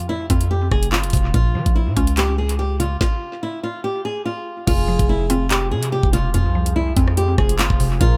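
A fingerpicked flamenco guitar with fresh strings opens this dark, ominous drill piece, carrying the melody through tape echo over a round, mallet-like synth pluck colored by chorus and phaser. Just after the start, an electronic drum kit lands up front, with a knocking kick, woody snare, metallic hi-hats, rim clicks, handclaps and crash cymbal, in a half-time feel at 144 BPM. Beside it, a punchy, heavy 808-style bass hits hard and decays. In F harmonic minor, the harmony moves from F to B-flat minor before the music stops at 3.0 seconds. It returns on F minor at 4.7 seconds, when a smooth, gliding portamento lead with vibrato slips in briefly in the background, and soon after a deep, moody detuned sawtooth pad settles underneath with slow attack, long release and built-in reverb. The mix is dry apart from heavy echo, and the passage is cut from a longer piece.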